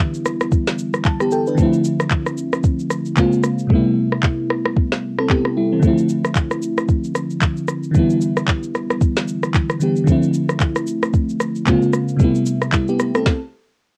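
Amapiano with a deep, soulful mood, swinging in 4/4, built on a bell-like FM electric piano with a sparkling, full-bodied tone and chorus, moving through seventh and ninth chords such as Em7, Dm9 and Bbm7, with a fill at 0.8 seconds. A smooth, electronic R&B kit sits up front with a soft kick, woody snare, rim click, handclaps and shaker, carrying a tape-warm character, and its hi-hats drop out between 3.7 and 5.8 seconds. The dry home cassette recording is cut from a longer piece and ends on a stop at 13.3 seconds.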